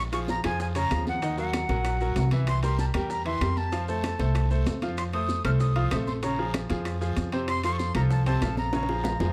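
Salsa at a brisk 192 BPM in Bb minor, this danceable, passionate passage is cut from a longer piece and moves through Bbm7, Ebm, C7 and F7 before circling home to Bbm7. A breathy, reedy jazz flute carries the melody high in its register, its straight tone and crisp chiff sitting over a bright, polished baby grand piano that comps up front with short sustain and audible action noise. The pizzicato upright bass, thumpy and woody on gut strings, is the most forward part, anchoring the low end from the first beat. Behind them, ringing high-tuned congas and metal-shell timbales sit close and dry, joined by round, low-tuned bongos, a raspy guiro, grainy maracas and woody claves at a whisper. A drum fill from 8.7 seconds closes the passage, and a moderate large-studio reverb wraps the dark mix.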